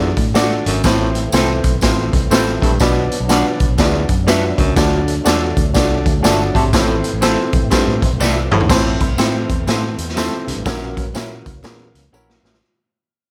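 This driving, passionate slice of uptempo 1960s-style soul in A dorian opens at 122 BPM with intimate grand piano accompaniment carrying audible action noise, a baritone saxophone riff in a jazzy subtone with vibrato, and a dark, round, foam-muted fingered electric bass. A raw garage drum kit sits up front with a punchy kick, a medium-tuned snare and a gritty, saturated tone with a rolled-off top, working crash, hi-hat and toms, and adding fills at 8.2 s and 12.1 s. Twangy, slightly broken-up electric guitar stabs through a small old amp with phaser, and a jingly tambourine both sit in the background, while a very quiet, fat tonewheel organ with key click and slow rotary speaker holds sustained chords. Over a swung eighth-note feel, the harmony moves through D, Am and Bm before reaching F#7/A#, all in a small room reverb. Cut from a longer piece, the music begins fading out at 8.7 s.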